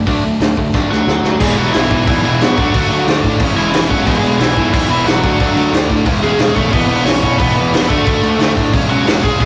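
A nasal, dark lead guitar with a parked wah sits up front and carries the melody from 0.9 s in this energetic, upbeat punk rock cut at 180 BPM in E mixolydian, riding over a loose, punchy indie drum kit with dark cymbals that fills from 0.7 to 1.4 s, a fuzzy picked bass, two bright distorted riffing guitars in the background and a very quiet, double-tracked sludgy guitar, all captured in a rough rehearsal-room recording with small-room reverb and saturated, rolled-off highs.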